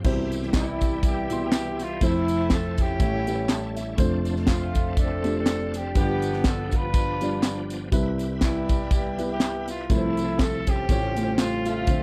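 A dry, close 1970s-style studio sound frames this soulful, reverent stretch of uptempo gospel, swung in 4/4 and cut from a longer piece. Up front, a dark concert grand with deep bass and short sustain carries the accompaniment and slips in a fill at 3.2 seconds, beside a crisp fusion drum kit with a punchy kick and high-tuned snare, while a bright tonewheel organ with key click and slow rotary speaker holds sustained chords in the background. Vintage, band-limited tambourine and handclaps join at 0.1 seconds, and a mellow horn section with light vibrato takes the jazz-style melody from 0.6 seconds over chords moving from Cmaj7 through Fmaj7, A7 and G7.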